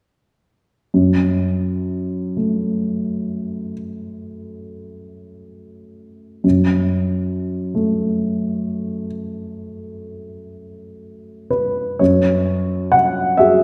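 Unfolding in a free, rubato 6/8 at roughly 40-46 beats per minute to the dotted quarter, this fragment of a longer impressionist solo piano piece in F# minor carries a nocturnal, mysterious mood. A single intimate baby grand, close and present with its action noise audible, plays from 0.9 s to 13.6 s across a span from F#2 to F#5, resting on F# minor before shifting to an F#sus2 colour at 12.0 s. A lush scoring-stage reverb with a 1.5-second tail surrounds it, lending the sound the air of a church or concert hall.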